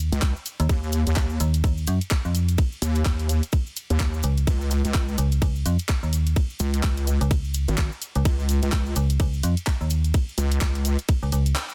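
Dry, dense and heavily limited, this gritty, bouncy bass house excerpt sets an overdriven, tight electronic kick up front beneath a metallic, decaying FM bass and a heavy, detuned wobble bass with chorus, both pumping against the kick, while an overdriven garage kit of handclaps, hi-hat and ride cymbal swings lightly over a grainy, bright cabasa in the background, before the whole band hits an accent into a break at 11.6 seconds.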